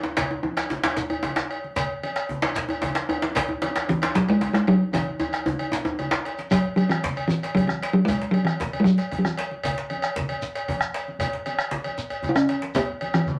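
Festive and earthy, this West African drum ensemble in a straight 12/8 gathers pace throughout as round bombo, metallic cowbell, softly struck vintage congas, a grainy shekere in the background and two deep djembes — one hard-handed with metal rattles that drops out at 6.2 s — support a resonant, up-front talking drum that carries the melody from 3.9 s, with drum fills and a wet club reverb across a short cut from a longer piece.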